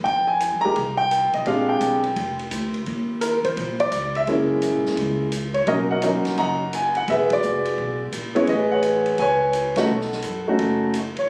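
Swinging eighth notes drive this relaxed, playful jazz piano trio fragment, cut from a longer piece, where an up-front concert grand with deep bass and long sustain carries the melody over a woody, growly pizzicato upright bass and a vintage kit of hi-hat, kick, ride with dark cymbals and a medium-tuned snare, the band hitting accents together at 7.3 and 9.7 seconds in a phone-captured room sound with light studio reverb and compression.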